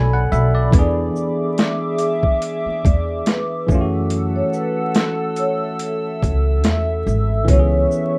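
A rough home-demo mix with light reverb and a bed of vinyl crackle gives this short lo-fi hip hop excerpt a hazy, nostalgic feel, moving at 71 BPM in 4/4 with a gentle 16th-note swing. A pizzicato upright bass with gut strings sits up front, woody and dark, beside a sampler-style boom bap kit that enters at 0.3 s. The kit is pitched down, compressed and overdriven, pairing a thumpy kick with a high-tuned snare, hi-hat and shaker. A barky, bell-like tine electric piano carries the accompaniment through cassette-tape colouring and a low-pass filter, while a dark analog pad holds deep, moody chords built from detuned square and sawtooth waves with a sub octave, a slow attack, chorus and phaser. From 0.7 s a vibraphone played with soft mallets sings a narrow, airy melody with a medium motor vibrato, its ringing, metallic tone softened by a low-pass filter. The harmony moves from Bm7 to E7, then settles on F#m7 before closing on C#m7.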